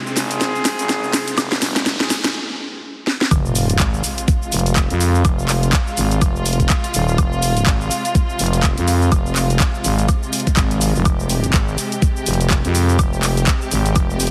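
With a heavily compressed, radio-like sound and light reverb, this swaggering, bouncy bass house excerpt opens on a build-up. Distant, smooth symphonic strings hold sustained chords under a pumping sidechain, a background riser and sub drop sweep in, dark vintage horns fire tight, tape-echoed stabs until 2.1 seconds, and an overdriven house kit with a cracking snare, bright hats, claps, shaker and woodblock plays a drum fill. At 3.3 seconds the drop hits as a knocking, overdriven electronic kick joins a thick, growling FM bass that sits up front, filtered and pumping, with the shuffling groove swung on the sixteenths.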